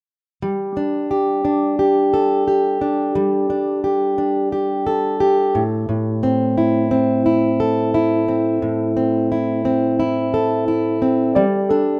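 Heartfelt and easy-going, this acoustic pop excerpt rests on a fingerpicked, plugged-in steel-string guitar, up front with a woody, full-bodied jumbo tone and the character of old strings, moving from Gsus2 to Am and back under a gentle sixteenth-note swing. Near the close, at 11.4 seconds, a dark upright piano enters with a brief mellow, short-sustained melody, and a moderate plate reverb lends the rough home-demo mix some space.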